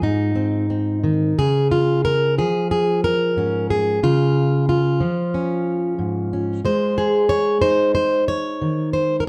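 Close, detailed microphones and a light reverb give this short excerpt an intimate, up-front sound. It is pastoral, hopeful folk for a single fingerpicked steel-string acoustic guitar, plugged in and carrying a slapback echo. The guitar has a dark, woody, full-bodied tone, with the worn character of old strings. The tempo sits around 91 BPM in 4/4, but the playing moves with a free, rubato feel in D-flat major, ranging from Ab2 up to Db5. The harmony opens on Ab, settles onto a Db6 chord at 1.4 seconds, and returns to Ab at 6.6 seconds before the fragment ends at 9.3 seconds.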